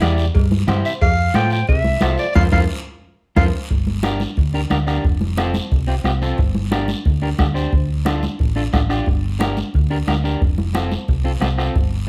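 Cumbia with a fiery, passionate Latin drive, this cut from a longer piece moves in a straight four. Up front, a dark, round hollow-body electric bass anchors the groove beside a soft-beater bombo with a vintage, band-limited tone. Close, dry congas with a bright, damped skin and a raspy guiro fill out the percussion, while ringing cowbell and timbales sit in the background until 3.4 s. A fingered electric guitar at the edge of break-up plays accompaniment underneath. A clear clarinet takes a jazz-style solo from 0.9 s, with light vibrato and scooped notes. A band accent and drum fill lead into a new section at 3.7 s, where the harmony turns toward minor chords, all under a light reverb.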